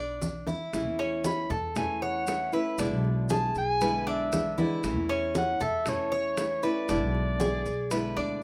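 Latin son and guajira in A major at 117 BPM, warm and relaxed, this short excerpt opens with a metallic, double-strung Cuban tres picking arpeggios over a woody, thumpy pizzicato upright bass, joined at 0.2 seconds by a brief drum fill as bright low-tuned congas, tight high-tuned bongos in the background and grainy maracas settle in. A full-bodied fingerpicked nylon-string guitar with audible finger squeak adds accompaniment from 0.7 seconds, and at 1.3 seconds an up-front solo clarinet enters with vibrato, soft attacks and scooped notes, its smooth top shaped in a jazz style. The chords move between A and E7 in a moderate studio reverb.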